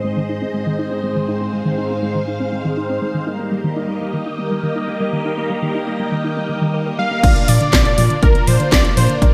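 A bright, 1980s-style italo disco passage at 121 BPM opens on a swirling, phased string machine, gentle chorused arpeggios from a soft round pluck and brassy synth stabs, with filter sweeps on the strings and arpeggios moving through Ab and Eb chords in a lush hall, before a bold unison lead enters at 7.0 seconds and a deep round bass, punchy overdriven kick and a house kit with cracking gated snare, metallic hats and crash arrive at 7.2 seconds on Bb, all melodramatic and bittersweet.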